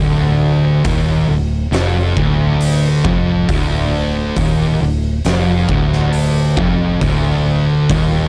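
Lightly reverberant and heavy, this ominous, hypnotic stoner and doom metal excerpt crawls at 68 BPM in D phrygian over a single D minor chord, with two dark, up-front fuzz guitars (one thick, one compressed) picking a low riff, a round, foam-muted fingered bass with overdrive beneath them, and an oversized low-tuned acoustic drum kit entering at 0.8 s with a punchy kick, fat snare, hi-hat and a gritty, pumping big-room sound.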